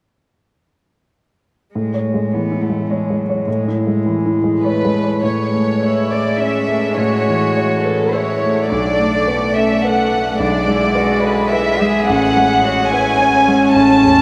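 In a flexible, rubato three-four, this intimate, tender neoclassical excerpt opens at 1.7 seconds with a distant, floating cello second line, joined at once by an up-front grand piano of vintage smoothness carrying the accompaniment. A close chamber violin section sings the melody from 4.6 seconds with light vibrato and sul tasto bowing, and a dark viola with an airy bow adds its accompaniment from 5.2 seconds, as the harmony moves from Amaj7 through Bm7 and E7/B back to Amaj7. A wet cathedral reverb sets the music in a vast, echoing space.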